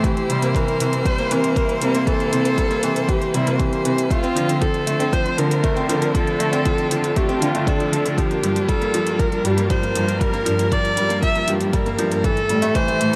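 Piano and strings electronica at 118 BPM in G dorian, this hypnotic, intimate passage is cut from a longer piece and moves through C7, Dm7, Gm7 and Am7 chords. Up front, a dark solo viola carries the melody with expressive vibrato and portamento and a smooth top, while a bright grand piano plays a brilliant, worn riff with short sustain. A close string quartet holds sustained chords with soft attack and vibrato, and a chamber cello section, bowed sul tasto with light vibrato, supplies the bass from 0.3 seconds, both parts pumping with sidechain. Beneath them, a deep, overdriven electronic kick sits up front until 12.9 seconds, alongside metallic, overdriven electronic hi-hats, both layered and re-recorded in a large room. Studio reverb wraps the ensemble in a roomy space.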